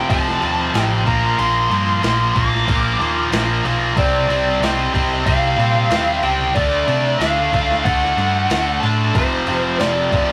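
A straight 4/4 pulse at 93 BPM drives this aggressive, heavy hard rock passage, cut from a longer piece and tuned slightly below standard pitch. A gritty, pitched-down sampler-style drum kit enters at 0.1 seconds with a thumpy kick, a medium-tuned snare and crash cymbal, sounding compressed and re-recorded in a small room; the kick and snare drop out briefly from 3.6 to 4.0 seconds. Three picked, distorted guitars play the riff together: a scooped high-gain guitar sits up front, while a bright high-gain guitar and a tight, double-tracked one stay in the background. Underneath, a round, punchy hollow-body short-scale electric bass holds the low end. Above them, a smooth overdriven lead guitar with a dark tone carries the melody as the chords move from F through Bb, Cm and D before landing on an F power chord at 9.2 seconds. The whole take has the rough feel of a rehearsal room, with light reverb and tube saturation.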